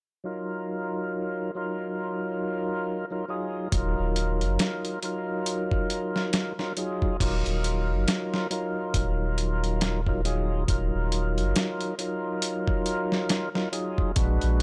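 Lightly reverberant digital ambience frames this smoky, dark trip hop excerpt at 69 BPM in Eb minor: a fat, overdriven tonewheel organ through a slow rotary speaker, with harmonic tremolo, low-pass filtering and tape echo, plays alone from 0.2 seconds over an Ebmadd9 chord, until a deep, round dub sub bass and a gritty, compressed sampler-style soul kit, with a thumpy kick, medium-tuned snare, hi-hat and crash, enter up front at 3.7 seconds with a swung sixteenth-note feel.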